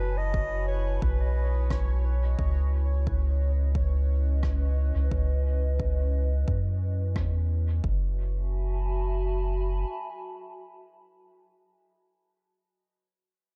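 This ambient dub excerpt moves at a steady 88 BPM in F# dorian, with a meditative, hazy mood. A dark clarinet opens with a brief classical-style solo phrase, trailing dub echo, and is gone by 2.0 seconds. Beneath it, a warbling, detuned tape-like pad holds nostalgic lo-fi chords with chorus and reverb, shifting from F#m11 to C#m9 and back to F#m11 at 7.8 seconds. A round, soft sub bass sits up front with a deep, sustained tone, while a resonant, bubbling stepped-filter texture drifts quietly in the background. An electronic kick drum gives a deep, tape-warm pulse and is joined by a faint, natural rim click that is filtered and echoed. The pad lingers alone at the end in a small room ambience.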